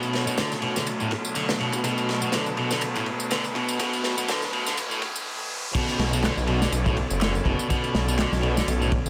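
A swung, crunchy breakbeat groove of tight kick, medium-tuned snare and dark cymbals, layered with electronic tambourine and handclaps, drives this energetic, swaggering breaks excerpt, where a bright, overdriven semi-hollow guitar riff sits up front over reedy, gut-string chamber strings holding sustained chords with sampler grit and sidechain pumping, a very quiet riser and downlifter join at 0.9 seconds through a filtered build-up, and after the drop at 5.7 seconds a thick, menacing detuned saw bass enters at 6.0 seconds.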